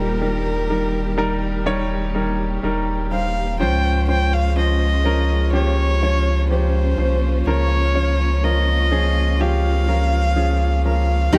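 A small room's ambience frames this emotional, hopeful pop excerpt, cut from a longer piece and moving at a slow 62 BPM in a straight 4/4. A dark, woody solo violin carries the melody from the start, bowed sul tasto with vibrato and sitting close to the ear. Beside it, a clear, polished concert grand piano plays the accompaniment up front, its deep bass present and its notes short in sustain, while a lush studio string section holds soft-attacked, expressive chords in the background. Underneath, a thick, saturated sub bass with a fast attack and long sustain pushes forward, anchoring the harmony as it moves from Eb to Dbmaj7 at 3.6 seconds and Bbm/Db at 7.5 seconds. At 11.3 seconds a picked steel-string acoustic guitar appears up front with a brief arpeggio, its tone warm with an auditorium sheen, just as the passage ends.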